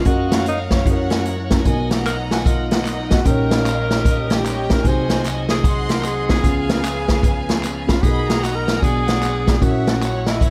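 A breathy, whispered tenor saxophone with subtone and scooped notes carries the melody alongside a vibrato-rich chamber string section, both touched by analog delay, over mellow tine electric piano, very quiet dark French horns and a piping tonewheel organ with key click and slow rotary speaker in the background. A swinging big-band drum kit, up front with a boomy kick, joins at 0.1 seconds, and tambourine, egg shaker and group handclaps with analog delay arrive at 1.6 seconds. This soulful, jubilant uptempo gospel excerpt in F# major swings at 151 BPM through rich changes from F#maj7 to a Bm6 near the close, all set in an echo-heavy mix with light reverb.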